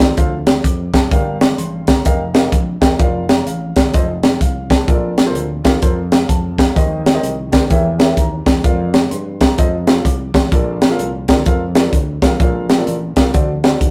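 A swung 4/4 groove from a crisp, punchy fusion drum kit, its high-tuned snare, hi-hat and kick sitting gritty and up front in a pumping small room, drives this uplifting, reverent uptempo gospel excerpt. A growly, bright fretless electric bass sustains low underneath, and a dark, mellow grand piano with audible action noise plays through the chords and adds a brief fill at 4.2 seconds, all captured as a rough rehearsal-room recording with light reverb.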